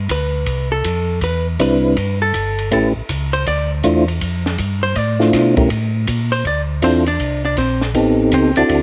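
Soul jazz organ trio with a bluesy, soulful swing, where a round, dark tonewheel organ bass line with chorus vibrato and slow rotary speaker anchors a clean, picked, compressed hollow-body electric guitar soloing up front throughout, a dry acoustic cocktail kit with a high-tuned snare, punchy kick and dark cymbals plays on hi-hat, ride, snare and kick, and at 1.6 seconds a soft, flute-like percussive organ with second harmonic percussion and its own slow rotary swirl enters with the melody, all set in light small-room reverb.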